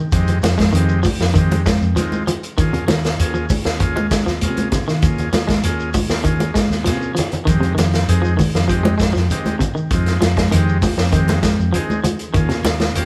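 Funky and hypnotic, this afrobeat excerpt has a band playing together in a large studio room, circling between Fm7 and Eb7sus4. A bright, clean semi-hollow electric guitar picks arpeggios over a buzzy combo organ bathed in spring reverb, while a dark, round, foam-muted electric bass anchors the low end. An up-front vintage drum kit with a punchy kick and rolled-off top drives the groove alongside ringing congas and a grainy shekere set in the background, with a drum fill arriving at 6.9 seconds.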